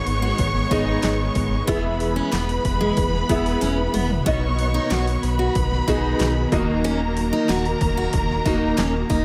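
A straight 4/4 groove at 93 BPM drives this warm, anthemic piano-driven pop piece, where a punchy, overdriven deep house drum kit of handclaps, hi-hat, kick, snare and toms, with a fill from 3.6 to 4.3 seconds, and a deep sine sub bass with octave underpin a clear, vintage concert grand piano treated with ensemble chorus, a full-bodied picked steel-string acoustic guitar riff, lush bowed strings holding background chords with portamento, and a woody violin section carrying a second line over G#m, E, B and D#m, in a dreamy, reverb-soaked mix.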